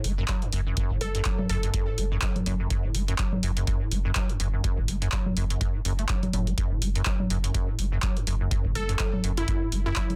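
Acid house with a hypnotic, raw mood and a swung 4/4 feel, built on a squelchy, resonant square-wave acid bass riff run through tube saturation, chorus, tape echo and sidechain pumping, over a thick, saturated sine sub bass that also pumps. A punchy analog drum machine with congas, handclaps and hi-hat sits up front with a tape-tinged small-room character, joined at 0.3 seconds by a dry, deep electronic kick. A crystalline, detuned wavetable pluck with chorus and tape echo flickers in at 1.0 seconds and returns at 8.8 seconds, all within a dense, heavily limited mix that has little reverb.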